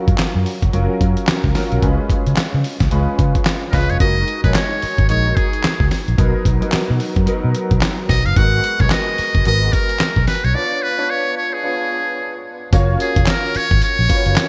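A bright, 1980s-style digital production with light digital ambience frames this bouncy, slick new jack swing excerpt at 110 BPM in 4/4, with a 60% swing on the sixteenths. Up front, a gritty, compressed sampler-style soul kit dressed in gated reverb drives the groove with a thumpy kick, a medium-tuned snare, hi-hat, handclaps and tambourine. A dark, round, foam-muted fingered electric bass punches beneath it, while a clear, polished concert grand piano with audible action noise and long sustain carries the accompaniment through an ensemble chorus, moving over chords from F#maj7 through Bmaj7, G#m9 and C#7b9. At 3.7 seconds a metal-muted trumpet enters as the buzzy, breathy solo voice, thin yet brilliant, with light vibrato, a smooth top, a jazz inflection and a touch of digital delay. A break arrives at 10.5 seconds before the harmony settles back on F#maj7 for the closing section.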